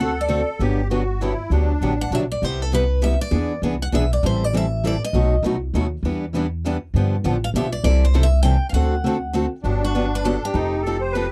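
A dry, close recording with a 1970s studio character carries this lively, charming excerpt of gypsy-jazz swing, a brisk 3/4 waltz at 199 BPM in G major. A bright concert steel-string guitar with old strings takes the melody, pausing between 5.4 and 7.4 seconds, while a reedy musette accordion with shimmering tuning adds a second line at the start and returns at 9.6 seconds. Two parlour guitars supply accompaniment, one boxy and the other warm and set back until it stops at 9.5 seconds, over an up-front plucked upright bass on gut strings that sounds dark, woody and thumpy.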